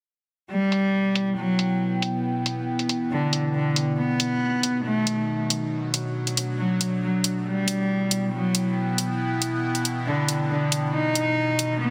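Heavy wobble dubstep in E minor at 138 BPM, felt in a swung half-time, with a chaotic, aggressive mood, cut from a longer piece and moving through Em, B and Bm7. A single bowed cello enters at 0.5 seconds with a pure, floating sul tasto melody touched by delay. Metallic electronic hi-hats arrive at 0.7 seconds, layered and tape-warm under a low-pass filter and small room ambience. A bright, morphing wavetable pad follows at 1.0 seconds, holding sustained chords with chorus and its own reverb while a filter sweeps across it. The whole mix carries light reverb and a heavily compressed, radio-like sound.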